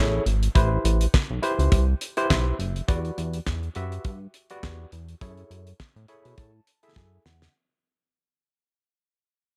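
Danceable and late-night, this short cut of early-eighties boogie funk moves at 103 BPM in 4/4, with a 16th-note swing and an F# phrygian color. A chorused synth bass sits up front from the opening, glossy and dark, its pulse-wave and sawtooth tone given a plucky filter and a saturated edge as it runs from F#1 to B2. A worn, slightly out-of-tune tine electric piano plays accompaniment in the upper register, lightly overdriven as if through built-in speakers, and adds fills around 2.0 and again from 5.8 seconds. The damped 70s drum kit comes in at 0.3 seconds with handclaps, hi-hat, a tight kick and a fat snare, sounding dry and mid-forward, and closes with a short fill at 7.0 seconds. The harmony moves from a rootless F#m9 through Am9 and Em9 before returning to F#m9, all set in a small room ambience as the passage fades out across its full length.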